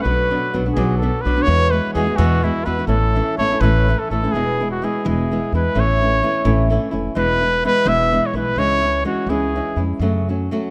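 In a 6/8 at 85 beats per minute, counted in dotted quarters, this festive, proud mariachi fragment breathes with a free, rubato feel, cut from a longer piece. A solo trumpet sits up front with a classical bearing, its smooth top and light vibrato carrying the melody between E4 and E5. Beneath it, a fingerpicked flamenco guitar gives warm acoustic accompaniment, while a woody pizzicato upright bass on steel strings anchors the low end, both close and forward. A ringing, thumb-plucked concert harp spins arpeggios high in the background before falling away at 5.3 seconds. The opening moves from A major through Bm and Eadd9 chords, then at 4.3 seconds the music shifts into E major, touching C#m and F#m as it goes. Close, detailed microphones and light reverb keep the sound intimate and clear.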